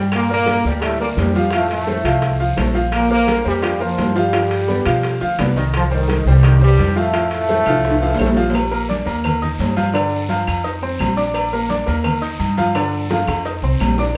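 A straight, joyful salsa groove in 4/4 drives this danceable cut from a longer piece. Thick-skinned congas, ringing metal-shelled timbales with agogo bells, soft-handed bongos with cowbell, woody claves, a raspy distant guiro and grainy maracas build the percussion bed beneath a dark, thumpy gut-string upright bass played pizzicato up front. A bright, brilliant concert grand piano with audible action noise accompanies throughout while a tight trombone section with light vibrato carries the melody until 8.3 s, and drum fills at 7.7 s and 13.1 s mark the turns, all set in a wet room reverb with the band playing live together.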